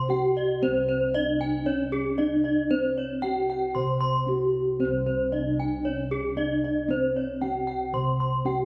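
Balinese gamelan in C pelog at 115 BPM, a brilliant, ceremonial passage cut from a longer piece, where a mellow, band-limited bronze metallophone struck with padded disc mallets carries the melody, a second metallophone played with a horn mallet sits up front, ringing through arpeggios with shimmering paired-tuning beats, and round, boxy bossed gongs hold the bass, the whole captured on a phone in a concert hall with a moderate reverb.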